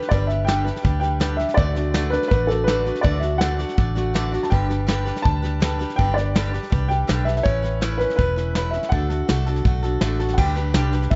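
Sunny and easygoing, this short clip of honky-tonk and classic country moves at a brisk 163 BPM in G major, with a woody, slightly detuned upright piano carrying the melody through a touch of analog delay. A boxy, picked swing-style acoustic guitar fills in the chords, while a foam-muted, round vintage electric bass sits up front from 0.1 s and a soft brush kit adds a punchy kick, medium-tuned snare, hi-hat and crash. The dry, dark production keeps the room close as the harmony strolls from G through Dadd9, Aadd9 and D before settling back on G.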